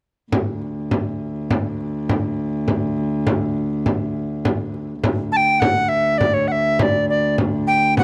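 Medieval dance in 2/4 with an ancient, rustic mood, where a dark, nasal, bowed viola da gamba holds a low drone under a small, bright frame drum played with hard hands, and at 5.3 s an airy tenor recorder with vibrato and a soft chiff enters above them to carry the melody, captured in a close, dry small-room recording.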